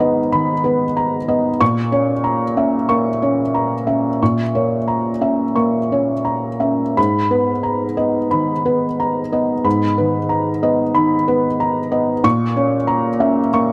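A felt-muted upright piano plays alone in this intimate, wistful neoclassical minimalist piece in G# minor, moving at a rubato 85-95 BPM in 4/4 and alternating between G#madd9 and A#dim chords across its span from G#2 to C#6. The piano's tone is soft and mellow, set up front with close, detailed microphones that catch the audible action noise, while a light reverb adds a little air. The 13.7-second passage is cut from a longer piece.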